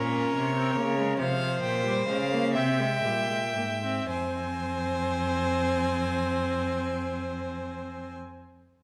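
Contemplative and solemn, this short excerpt from a longer baroque-style fugue for string quartet unfolds in F minor at a slow 36-50 BPM, counted in dotted quarters in a straight 6/8. A rich, close first violin carries the melody between Db5 and Ab5 with smooth, even bowing and vibrato, while a warm second violin with a smooth top traces its own line just beneath. A clear viola fills in the accompaniment with steady, vibrato-tinged bowing, and a cello anchors the bass, its tone heard as distant yet placed up front, shaping phrases expressively with portamento. The tempo slows through the first 4.1 seconds as the harmony moves from Bbm through C7sus4 and C7 before settling on Fm at 4.1 seconds, where a second section begins. A resonant recital-hall reverb surrounds the players, lending the quartet a spacious, reverent glow.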